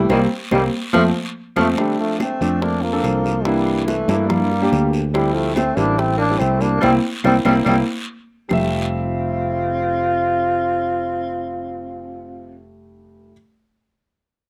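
Afro-Cuban jazz at 143 BPM in F major, danceable and sunny, with a clear, vibrato-laden trombone carrying the melody up front through a slapback echo while a breathy, whispered tenor saxophone with scooped notes adds a second line beneath it. A warm concert grand piano, its action noise audible, accompanies alongside a growly fretless electric bass, and the band hits accents at the opening and again from 6.8 to 8.5 seconds as the piano adds a fill. Ringing high-tuned congas, very quiet round bongos, woody claves and a raspy, saturated guiro drive the groove until 8.6 seconds, after which the horns, piano and bass carry this fragment of a longer piece to its close on Fmaj7.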